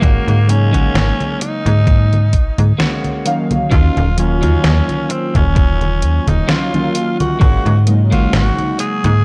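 A slow 4/4 groove with a light swing on the sixteenths opens this nostalgic, melancholic vaporwave fragment, cut from a longer piece, driven by a thumpy, tape-warm electronic kick and a detuned 8-bit drum machine tapping out congas, hi-hat and a medium-tuned snare under gated reverb. Up front, a snappy slap-like FM bass with a metallic attack and tube saturation anchors the low end. A growling tenor saxophone carries the melody, raspy and edgy with vibrato and scooped notes, its sampler grit and tape echo giving it a worn sheen. Behind it, a bright, twangy clean electric guitar picks a compressed riff, while warbly lo-fi synth keys enter at 0.5 seconds with an airy, detuned accompaniment through analog chorus. The harmony moves between Ab9sus4 and Ebm9, and the kick drops out at 7.6 seconds, leaving the rest of the band to finish on a dry, cassette-tinged sound.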